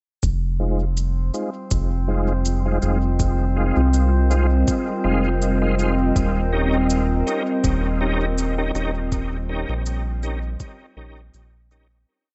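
A hazy, deep mix with light reverb and a dulled top end carries this short ambient dub piece, which fades out from 8.1 s to its close at 12.1 s. A round analog bass with long gliding notes sits up front beneath a soft, overdriven electronic kick and a sparse, echoing shaker, while a warbling, lo-fi tape-like pad holds mellow chords that move from Fm7 to Eb7 at 6.2 s. A smooth tonewheel organ with chorus vibrato, fast rotary speaker and dub echo plays off-beat chord stabs through a filter sweep, and a glassy harmonics texture drifts through the mix on a held high note.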